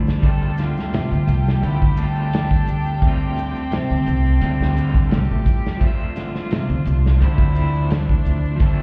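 A straight 4/4 trip hop groove at 86 BPM comes in at 0.1 s from a punchy, up-front acoustic drum kit of kick, medium-tuned snare and hi-hat, coloured with vintage 12-bit sampler grit, while very quiet, close and dry maracas and group handclaps sit low in the mix. Beneath it, a woody, growly upright bass plays pizzicato on steel strings and stands forward in the mix. An electric guitar at the edge of break-up adds twangy, fingered accompaniment through tremolo and the same sampler grit, and a very quiet, bright nylon-string guitar fingerpicks classical-style arpeggios with audible finger squeak until 8.6 s. A distant, nasal cello carries the melody with light vibrato and a period-style gut-string tone washed in tape echo, over sustained chords from a close, reedy violin section that moves from Fadd9 to Dm7 at 5.8 s. The whole cut sounds melancholic and cinematic, as if heard muffled through a wall in a small stone room.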